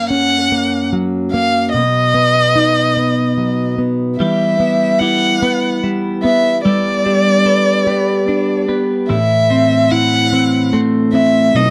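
Rocking in a slow, straight six-eight at 49 beats per minute on the dotted quarter, this aching, melancholic pop ballad unfolds as a short cut from a longer piece. A solo violin carries the melody up front, bowed with vibrato, soft attacks and expressive portamento in a narrow span from D5 to F#5. Beneath it, a plugged-in steel-string acoustic guitar of jumbo body fingerpicks a full-bodied accompaniment from F#2 to B4, also close and prominent. At 4.2 seconds a clean, compressed twelve-string electric guitar joins further back, picking twangy, bright arpeggios colored by spring reverb. The harmony moves from F# to B, then through Em and Gadd9 to Am, all captured as a dry, close studio recording in the 1970s manner with a modest booth ambience.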